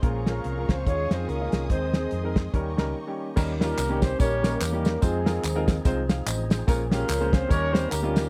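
Jubilant and hopeful, this uptempo gospel excerpt swings at 145 BPM, with a punchy, dark-cymbaled soul drum kit and a round, hollow-body fingered electric bass up front beneath a mellow, octave-doubled horn section carrying the melody in a smooth jazz style. A woody upright piano accompanies throughout, while a lightly overdriven tonewheel organ with fast rotary speaker sits very quietly underneath, and lush bowed strings hold dark, expressive chords only until 3.4 s. After a brief break at 3.0 s, tambourine, tube shaker and group handclaps join from 3.4 s, all captured in a dry, close 1970s-style studio sound.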